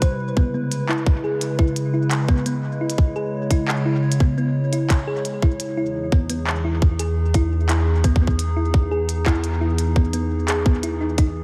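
Melancholic and glitchy, this IDM fragment, cut from a longer piece, rests on a warbling, nostalgic pad that holds sustained chords, moving from C#m7 at 0.2 seconds to Emaj7 at 5.8 seconds. The pad is lo-fi and dark, with a slow attack, long release, chorus and its own built-in reverb, and it sits up front. A round, tine-like synth pluck resembling a thumb piano plays gentle, full-bodied arpeggios, its FM tone carrying a noise layer, with a fast attack and decaying notes treated with chorus and tape echo. A tight, tape-warm electronic kick in studio reverb anchors the straight 4/4 pulse from the front of the mix, while a quieter glitchy kit adds clicky hi-hats and handclaps through studio reverb and tape echo. The mix sits in light reverb and a digital ambience.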